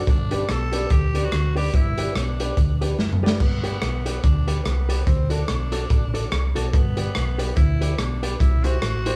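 A swung, bouncy ska groove drives this joyful snippet, cut from a longer piece. Up front, a crunchy breakbeat drum kit sounds saturated and gritty, with dark cymbals, a tight kick, a medium-tuned snare, rim clicks and toms, and it plays a fill from 3.0 to 3.4 seconds. Beside it sits a round, amped short-scale hollow-body bass, while a clean, compressed hollow-body jazz guitar supplies the accompaniment. A mellow, woody upright piano adds boxy stabs in the background, its action noise audible, and it drops out at 3.3 seconds. Over the top, a raspy tenor saxophone carries the melody with vibrato and a smooth upper edge, as the band plays live together in a large studio room with moderate reverb.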